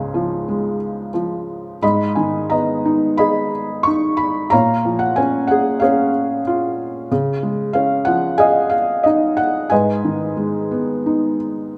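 Classical solo piano in a lyrical vein, this brief fragment from a longer piece carries a bittersweet, brooding mood. A felt-muted upright piano plays alone from 0.0 to 11.8 seconds, spanning a range from deep bass to the upper middle of the keyboard. Its tone is soft and mellow, with a thin layer of felt dulling the hammers, and the audible action noise makes the instrument feel intimate and close. The pulse is in four, but the beats are uneven and the phrasing moves with a free rubato, giving the line a searching, unhurried quality. The harmony drifts through C#, G#madd9, A#m7 and C#add9 before settling on G#m, and a moderate concert hall reverb lends the up-front, natural-sounding piano a gentle sense of space.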